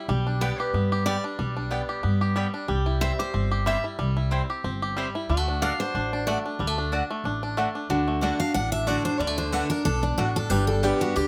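A jumbo steel-string acoustic guitar, picked and full-bodied, takes a solo in the first 7.9 seconds of this virtuosic, joyful bluegrass excerpt, which is cut from a longer piece. The tune swings along at 184 BPM in 4/4 in D mixolydian, moving through G/B, C and D before landing on G. A twangy, percussive banjo picked with fingerpicks plays arpeggios up front, while a growly, thumpy pizzicato upright bass holds down the low end and a mandolin adds double-string stabs. In the background, a nasal, metallic lap resonator guitar played with a slide and fingerpicks carries a second line. At 8.4 seconds an auditorium-bodied picked guitar enters with a bright melody, finger squeak and plate reverb. The close, detailed recording sits in a light reverb.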